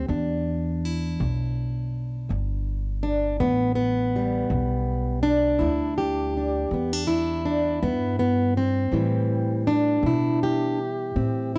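Soulful and brooding, this slow acoustic country blues in 12/8 at 54 BPM in E minor sets an up-front, full-bodied jumbo steel-string acoustic guitar, fingerpicked and plugged in, carrying the melody over Em7 until a move to Am7 at 8.9 seconds, beside a woody, thumpy, dark pizzicato upright bass, also up front, holding down the low end in a dry, close 1970s-style studio sound.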